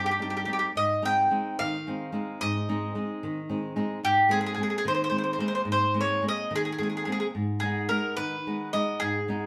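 A picked mandolin carries the melody from the first moment, its doubled strings giving a round, up-front tone in the upper register. Beneath it, a fingerpicked flamenco guitar with fresh strings plays the accompaniment in a lower, warm register, sitting close to the listener and only slightly behind the mandolin. This is Italian folk in a straight 6/8, romantic and passionate in mood, with both instruments playing throughout this short fragment of a longer piece. The harmony settles on a major chord that later gains an added ninth, then turns to a new minor colour when the second section begins at 7.4 seconds. The pair sound as if playing live together in one room, framed by a fairly wet studio reverb.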